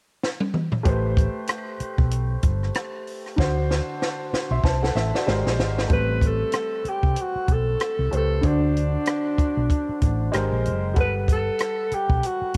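A short fill on a dry, compact cocktail drum kit with a high-tuned snare, punchy kick and cassette-tape grit opens this cinematic, smooth 1970s-style soul excerpt, soon joined by a clear, worn grand piano with long sustain and a dark, round hollow-body electric bass over Am9 and D7 changes with a gentle swing, before a breathy, mellow alto saxophone with light vibrato and subtone takes the jazz-style solo melody at 5.9 s, its distant, roomy tone also tinted by cassette tape in a small-room home recording.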